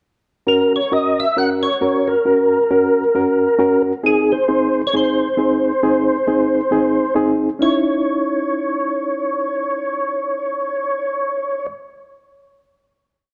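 Swung eighths drive this short, urgent soul piece, where a mellow, round tonewheel organ with key click, percussive attack, chorus vibrato and slow rotary speaker carries a motif-based melody over reedy electric piano chords in close voicing that pulse in quarter notes through fast tremolo, set in a dark production with a moderate echo chamber, before reaching a final chord at 7.6 seconds.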